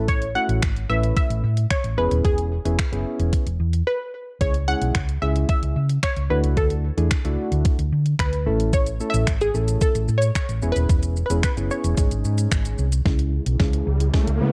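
A bright, detuned analog pluck melody with chorus, phaser and tape echo opens over mellow electric-piano-like synth keys and a round, punchy hollow-body fingered bass, both pumping with sidechain, while an overdriven 8-bit drum machine with thumpy kick, snare, hi-hat, shaker and finger snaps drives this bittersweet, confident dance-pop in C# minor at 111 BPM through a break at 3.9 seconds and a closing drum fill and build-up, where a riser enters at 13.6 seconds in a dark digital ambience.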